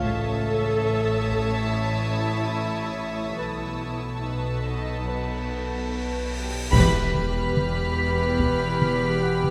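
Uneasy and tense, this cinematic suspense cue moves at 72 BPM in 4/4, a short cut from a longer score that passes from A to B7 and settles on E minor. A clear studio violin section holds a high, floating melody played sul tasto, with a soft-attack symphonic violin second line and a fainter, higher violin texture behind it, while a woody, lush viola section adds accompaniment with vibrato. Below, a distant double bass section and an intimate cello section carry the bass, joined by a detuned, sawtooth-edged drone, and a glassy texture of drifting overtones with chorus sustains chords overhead. A delicate, slightly out-of-tune celesta with soft felt hammers sits in the background, and close, dry taiko drums struck with heavy sticks mark the opening moments. A huge, bright cymbal swell arrives at 5.5 seconds and leads to an impact at 6.7 seconds, where the taiko return and a vintage French horn section enters with sustained chords. 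The sound is detailed and closely captured, with light reverb.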